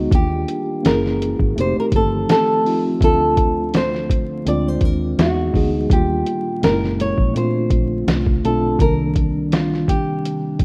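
A mellow tine electric piano, a dark analog pad and a round, foam-muted electric bass open this brief excerpt of reflective, melancholic lo-fi hip hop, with a fingerpicked nylon-string guitar and a sampler-style drum kit arriving at 0.1 seconds. The groove sits at 83 BPM in 4/4 with a gentle swing on the sixteenths, set in C dorian over drifting jazzy chords such as Ebmaj7, F#9 and Bbmaj9, settling on Cm9 when a new section begins at 8.8 seconds. The drums sit up front, compressed, pitched down and muffled, with a thumpy kick, a medium-tuned snare and hi-hat carrying a tape-warm character. The small, up-front guitar carries the melody above the clean electric piano, which sounds as if played through its built-in speakers, while the dark, punchy bass anchors the low end. Beneath them the very quiet pad layers detuned square, sawtooth and triangle tones with a sub octave, a moving notch, chorus, a slow attack and a long release. 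Light reverb, vinyl crackle and a rough home-demo mix give the whole piece a hazy, intimate feel.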